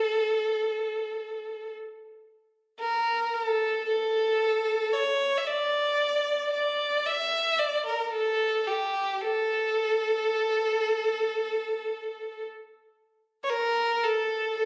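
In free time, a single bowed violin carries this Arabic excerpt alone from 0.0 to 14.7 seconds, its longing, melancholic line moving between G4 and E5. The tone is rich and focused, with vibrato and a smooth top, and the instrument sits up front. A moderate recital hall reverb surrounds it, along with a club-style reverb and compression on a phone recording made in the room.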